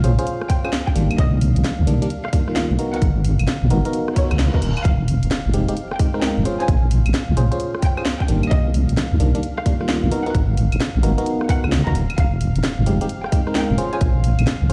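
Soulful and bouncy, this two-step UK garage cut from a longer piece swings on a tight, up-front electronic kick and a layered garage kit of claves, hi-hat, rim click and a cracking snare, beneath a deep, dark wobble bass that sits forward in the mix. Glassy, bell-like FM electric piano stabs with a warbling cassette-tape character and digital delay ride over a soft, sidechain-pumped analog pad in the background. From 0.5 seconds a rich, bowed studio violin section carries the melody with vibrato and a smooth top, while a brief reverse cymbal enters at 4.1 seconds, all set in a bare stone room with vinyl crackle.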